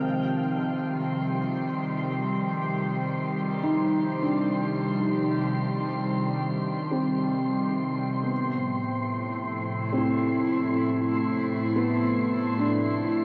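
A worn, warbling cassette-tape sheen and a lush hall reverb wash over this weightless ambient excerpt, which drifts at 58 BPM in 4/4 and moves from C minor to A minor at 8.3 seconds. Up front, an airy, breathy pad with chorus holds full-bodied sustained chords, while a felt-muted upright piano plays dark, intimate arpeggios through a diffuse ambient delay. In the background sits a calm, organ-like drone with ensemble chorus, joined by a wind-like tuned noise texture, both sustained throughout.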